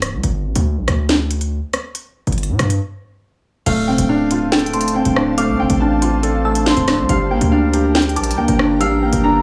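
A tense, cold half-time drill excerpt opens on a punchy, heavy 808-style bass and an up-front electronic drum kit with a sharp snare and crisp hats, then at 3.7 seconds a fingerpicked, ringing Celtic harp melody with tape echo arrives over a soft, felt-muted upright piano with audible action noise, joined at 4.4 seconds by an ethereal, airy pad in the background and at 4.7 seconds by a glassy, warbling FM synth bell line, set in a light studio reverb.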